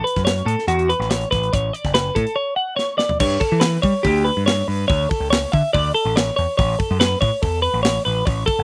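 A bright, twangy twelve-string electric guitar opens this short, playful and wistful slice of math rock and midwest emo, spinning clean, compressed arpeggios from the first moment. A growling picked bass joins at 0.2 s, its overdriven, punchy tone sitting up front beside the guitar. The modern studio drum kit brings an airy, polished sound with a punchy kick, a medium-tuned snare, hi-hat, crash and toms. A drum fill from 2.8 to 3.2 s leads out of the opening passage on A69 into a new section that moves through Gadd9, D5 and Aadd9. The mix is close and dry, with little reverb and an open-air feel, and the fragment is cut from a longer piece.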